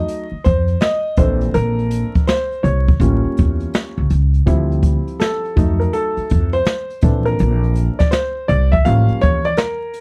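Jazz-hop excerpt with a nocturnal, mellow mood at a swung 82 BPM, where a smooth, vintage grand piano with short sustain carries the lead throughout over rich chords such as F7b9, Bbmaj9#11 and A7b9b13, supported by a brushed drum kit with a boomy kick and a woody, growly pizzicato upright bass entering at 0.3 seconds, all captured in a dry, close 1970s-style studio sound dusted with vinyl crackle.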